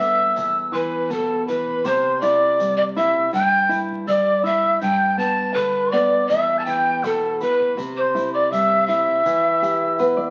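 Andean folk in a wistful yet festive mood, with a breathy, mellow pan flute carrying the melody up front, full of vibrato and a crisp, chiffy attack, while a bright, reedy quena adds a second line above it in a straight, airy tone. A fingerpicked nylon-string guitar accompanies throughout, its finger squeaks audible, and closes with a short fill from 9.6 seconds, as a round bombo and a grainy tube shaker sit very quietly in the background. The sound is wet with studio reverb and carries the crackle of a very old 78 rpm record, and the passage is cut from a longer piece.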